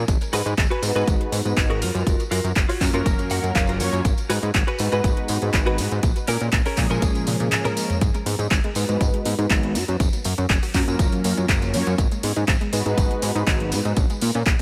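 A straight 4/4 nu-disco groove at 121 BPM drives this sensual, groovy excerpt in G# dorian. A punchy, overdriven electronic kick sits up front alongside a layered pop drum kit of metallic hi-hats, handclaps and toms, with a vintage, band-limited tambourine washed in tape echo. A fat, detuned sawtooth bass holds down the low end, while mellow synth brass colored by chorus, phaser, cassette tape and tape echo sustains chords that move through G#m7, F#maj7 and A#m7. A clean, scooped electric guitar, recorded direct and treated with ensemble chorus and tape echo, plays a picked riff with a fill at 3.1 seconds, then drops out at 8.0 seconds after a drum fill at 7.3 seconds, as a very quiet, bright analog pluck takes over with arpeggios. The echo-heavy mix is set in light digital ambience.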